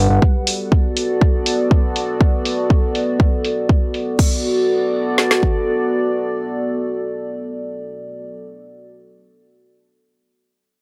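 Melodic techno at 121 BPM in B minor, hypnotic and cinematic, cut from a longer piece where a dark analog pad holds sustained Bm7-rooted chords from 0.0 to 8.3 s, its deep, moody blend of square, sawtooth and triangle tones with a sub octave, slow attack and long release sitting up front, colored by chorus and phaser and pumping against the sidechain. A layered electronic deep house kit brings a deep kick and woody snare forward from 0.2 to 5.5 s, while dark, low-pass-filtered hats and crash cymbal sit further back. Moderate spring reverb and plenty of echo give the mix an echo-heavy space.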